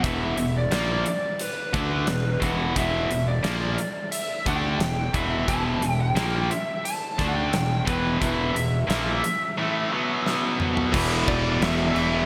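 A lead guitar through a small cranked amp carries the melody from the start, its overdriven, warm tone dressed in lush chorus and digital delay as it sings high above the band in this menacing, aggressive hard rock excerpt cut from a longer piece. Beneath it, a distorted electric guitar sitting in the background and a tight distorted guitar drive picked riffs, with a growly, fuzz-laden fingered electric bass adding punch down low. A huge arena drum kit with a punchy kick, medium-tuned snare, bright cymbals and a pumping room sound powers the groove, and a drum fill at 10.3 seconds leads into a new section. At 10.9 seconds a double-tracked, high-gain distorted guitar joins in the background, thickening the riff for the final moments. The bright, 1980s-style digital production is bathed in a moderate, lush hall reverb that lends the whole band a big, arena-sized scale.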